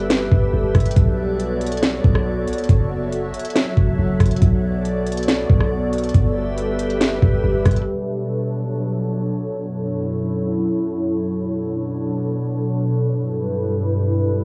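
A hazy, muffled cassette home recording with a small-room glow carries this melancholic atmospheric cloud-rap fragment at 139 BPM in a half-time 4/4 feel in B minor: an up-front, glassy, ethereal FM pad with ensemble chorus and its own reverb sustains slow-blooming chords cycling through G69, Bm9 and F#m7 for the full 14.4 seconds, while a deep, boomy, mellow sine 808 bass with a noise layer and an up-front, tape-tinged trap kit of knocking kick, sharp snare, rim click and crisp hats play until 7.9 seconds, after which the pad sits alone under a filter sweep.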